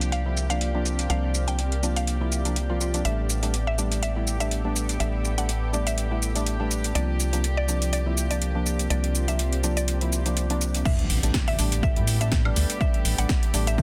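A relaxed deep house groove at 123 BPM opens with a hollow, dark FM bass sitting up front, pumping against the sidechain beneath mellow, organ-like stabs smeared with lush chorus and dub echo. A layered electronic kit with a punchy snare and metallic, overdriven hats keeps a swung 4/4 pulse, its hats, cymbals, snare and percussion softened by low-pass filtering, with shaker, woodblock and crash adding color. In the background, a smooth, warbling analog pad carries the sus4 chords with vintage 12-bit grit, while a woody, round synth pluck traces a small melody through chorus, cassette tape and tape echo, and a reedy violin section holds a single note with light vibrato. From 0.4 seconds a cloudy, evolving granular pad blooms in its own reverb, adding a blurred haze over the mix. At 10.9 seconds the drop arrives as a dry, punchy analog kick enters alongside a very quiet electronic impact, giving this dense, heavily limited excerpt a firmer floor under its gentle, hazy calm.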